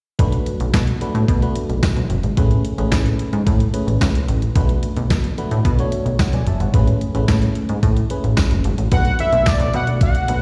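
Early-eighties boogie funk in B dorian, this slick, danceable excerpt from a longer piece moves at 110 BPM in a straight 4/4, cycling between Bm7 and Amaj9. A clean 12-bit drum machine sits up front with a thumpy kick, medium-tuned snare, hi-hat and handclaps, joined by a punchy, plucky analog bass built from sawtooth, pulse and triangle tones with ring modulation and a filter sweep. A glassy FM electric piano with a bell-like attack and a faint noise layer warbles through chorus and slapback echo, while a jingly tambourine stays in the background from 0.7 to 9.6 seconds. At 8.9 seconds a fat, detuned analog lead with a sub octave enters, mellow and sustained, carrying slapback and tape echo on the melody. The whole mix sounds like a live gig heard through the venue's PA, wrapped in recital hall reverb.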